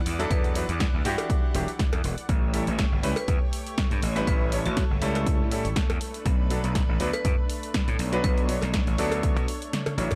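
A lush, detuned unison pad pumping in the background and a gritty, overdriven slap bass open this sensual, cosmic nu-disco excerpt at 121 BPM with a light 16th-note swing, soon joined by a punchy house drum kit, a brilliant concert grand piano with analog delay, a ringing hard-mallet vibraphone melody set back in the mix, a tape-warm electronic kick up front and a close, dry cowbell, while the harmony moves through Em9, A7 and Dmaj7 in a dark production until the kick drops out at 9.7 s for a drum fill.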